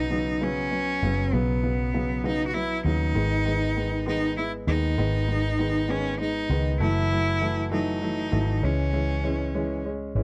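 A clear, bowed cello carries the melody up front, a single player with smooth, even tone and vibrato singing in a middle-low register. Beneath it, a baby grand piano supplies accompaniment with a natural, short-sustained sound, while a vintage muted electric bass, fingered and foam-muted, adds a dark, round, amped foundation. This six-eight pop ballad has a melancholic, dramatic mood, its harmony moving from Bsus2 through G#m and F#m7 to C#m. All three parts play together throughout the roughly ten-second span, which is cut from a longer piece. The sound is dry and close, like a 1970s studio recording with little reverb.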